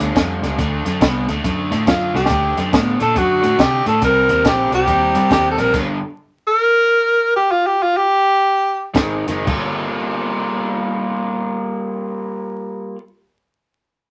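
A short, moderate small-room reverb and a layer of vinyl crackle give this cut from a longer electric blues shuffle a mournful, smoky character. Set in G minor and 4/4 with a swung eighth-note feel, it moves between 112 and 140 BPM and slows down from 5.7 to 9.5 seconds. A clear tenor saxophone sits up front with the jazz-style solo melody, carrying a light vibrato until 8.9 seconds. A bright, raw garage guitar with overdrive plays the picked riff, while a vintage, foam-muted fingered electric bass adds a dark, round line. A compact cocktail kit is dry and punchy, with dark cymbals, a high-tuned snare and a drum fill near the start. The chords run through G7, D7, Cm7 and Gm before an Ab5 leads into a closing Gm9 section.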